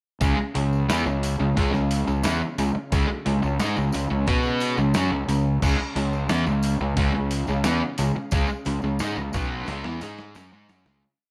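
A moderate large-studio reverb with a digital ambience frames this short classic rock piece, a swaggering, driving riff at 89 BPM in 4/4 with a straight feel, centred on Db mixolydian over a single Db chord. Two electric guitars carry the power-chord riff from 0.2 s: a dark, overdriven semi-hollow guitar sits in the background, while a sludgy distorted guitar adds a warmer, picked weight. Up front, a round, fuzzed fingered electric bass drives eighth notes and doubles the guitar riff. A gritty, compressed sampler-style drum kit with a thumpy kick, medium-tuned snare, hi-hat and crash lays down a big rock groove with an overdriven, small-room character, alongside a jingly, bright tambourine in the background. Beneath it all, a very quiet string machine cello patch holds full-bodied, vintage sawtooth chords with ensemble chorus, swells and changing inversions. The piece fades out from 8.3 s, and a drum fill enters at 9.7 s and plays to the end at 11.0 s.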